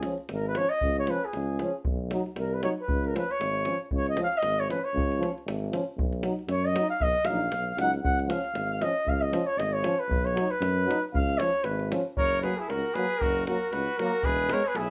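Balkan brass band folk in Db mixolydian, this exuberant, virtuosic cut from a longer piece moves at 116 BPM in a lightly swung 2/4, with a mellow flugelhorn soloing up front with light vibrato and a soft attack until 12.2 seconds, over a warm, vibrato-rich tuba bass and a tight, dry davul. Clear euphonium and trombone supply classical-style accompaniment beneath it, the trombone set back in a moderate studio reverb. At 12.2 seconds the harmony shifts from its Db and Cb alternation to F# and the trumpet enters with a roomy, distant second line.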